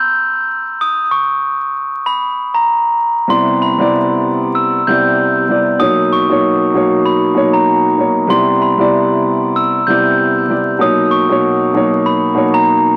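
A lightly swung hip hop groove at 96 BPM in 4/4 carries this nostalgic, confident fragment, which opens with a glockenspiel struck with soft plastic mallets playing a ringing, bell-like melody on its own before a dark grand piano enters at 3.3 seconds. The mellow, vintage piano, colored by cassette tape, sustains long accompanying chords that move between Cmaj9 and Bmaj9, sitting up front beside the metallic glockenspiel, which stops at 12.7 seconds. A moderate echo chamber reverb and small room ambience surround a dry, gritty hardware sound with vinyl crackle and a dulled top end.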